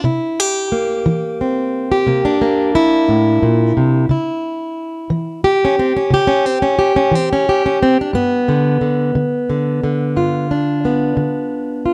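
Acoustic country blues in a slow 12/8, this short gritty, rollicking passage features a single fingerpicked steel-string acoustic guitar, plugged in, playing alone and up front from start to finish. The parlour-sized instrument sounds bright and boxy with fresh strings, and finger squeak is audible in the close, detailed recording under light reverb. The harmony moves from C7 to C#dim at 4.1 seconds and lands on G7 at 8.1 seconds.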